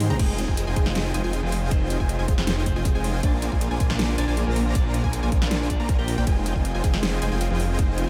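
A drum fill on the big-room dance kit, with its huge snare and metallic hats, opens this bittersweet, emotional future bass excerpt in F dorian at 158 BPM with a half-time feel, and a hard-clipped, tape-warm electronic kick sits up front from 0.2 s. A dense, compressed supersaw riff with vibrato and analog delay leads over a thick, detuned saw bass with chorus, both pumping against the kick as the chords move from Fm7 to Bb7 and back at 6.3 s. Further back, a dark, clean electric guitar picks a melody through sidechain pumping and delay, a punchy unison pluck with 12-bit sampler grit and a very quiet, soft, round pluck trace arpeggios, and a clear, focused studio string section holds sustained chords, all under light reverb.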